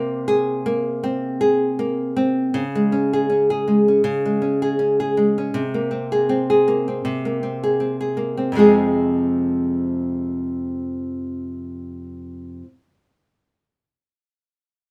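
A lightly swung 16th-note pulse at 80 BPM carries this reflective, wistful pop fragment in F minor, cut from a longer piece, where a solo fingerpicked nylon-string guitar, warm, small and up front in a touch of light reverb, moves from Abadd9/C through Db5 at 2.5 seconds and settles on Fm at 8.5 seconds.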